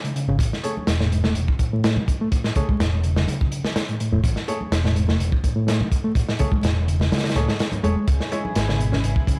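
Breakbeat in a funky, raw vein, this short cut from a longer piece moves at 125 BPM in 4/4 with a light swing on the sixteenths. A crunchy, saturated breakbeat kit sits up front with gritty kick, snare and hi-hat and a rolled-off top, while a reedy electric piano riff runs through tape echo over an Amaj7 chord. A picked, amped electric bass holds the low end, and very quiet congas played with soft hands add bright hand percussion. Faint grand piano stabs, brilliant and short in sustain, pass through tape echo and a low-pass filter that sweeps across the whole passage. At 8.1 seconds the harmony shifts to C#m as a warm chamber string section enters with intimate, sul tasto sustained chords that pump against the sidechain. The production is dark, with light small-room reverb and a bed of vinyl crackle.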